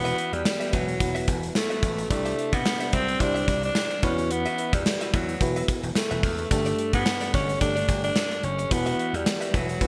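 A lightly swung 16th-note groove at 109 BPM in 4/4 drives this uplifting, glossy 1980s-style pop excerpt, where a punchy gated drum kit with tambourine and a warm, amped slap bass support a raspy, growling alto saxophone lead up front, while a glassy, bell-like FM electric piano with chorus adds accompaniment and a clean, compressed electric guitar riff with subtle chorus and delay sits in the background, all under a bright digital sheen and lush hall reverb over chords moving from Esus2 to Cadd9 and Gsus2.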